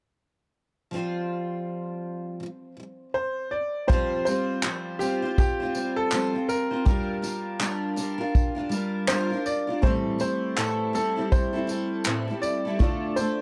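A bright upright piano carries the melody in this carefree, sunny acoustic pop excerpt, its woody, brilliant tone ringing with long sustain up front in the mix. The piece moves at 81 BPM in 4/4 in F major, with a gentle 60% swing on the sixteenths. A double-tracked steel-string acoustic guitar opens alone at 0.9 seconds, picked and up front, before the melody piano joins at 3.1 seconds. At 3.9 seconds a soft brush drum kit with a tight kick, handclaps and tambourine arrives alongside a felt-muted upright piano that sits mellow and intimate in the background, plus a jingly, vintage-sounding tambourine tucked further back. The harmony moves from Fsus2 through Gm7 and Am7 to Dm. The production is dark and dry, with the drums carrying a natural small-room character.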